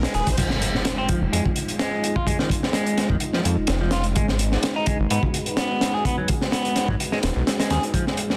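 Crunchy, saturated breakbeat drums with a punchy kick, high-tuned snare and dark cymbals drive this funky, gritty breaks excerpt alongside a fat, detuned sawtooth bass, while a fingered semi-hollow electric guitar riff with overdrive and dub echo and a moody, deep analog pad in the background, pumping under sidechain with 12-bit sampler grit and chorus, are joined by an electronic riser whose impact lands with the drop at 0.4 seconds over Fm7 and Abm7 chords.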